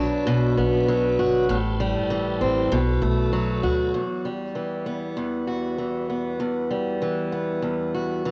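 A home cassette recording with light reverb and a small-room ambience frames this reflective, wistful acoustic pop passage in E minor, cut from a longer piece at 98 BPM with a gentle 16th-note swing. An up-front picked acoustic archtop guitar with fresh strings carries the accompaniment. For the first 3.9 seconds it is joined by a thumpy, woody upright bass on pizzicato gut strings and a piping, scooped tonewheel organ holding sustained chords in the background, with overdrive, chorus vibrato, key click and a fast rotary speaker. The guitar then plays alone until 8.3 seconds.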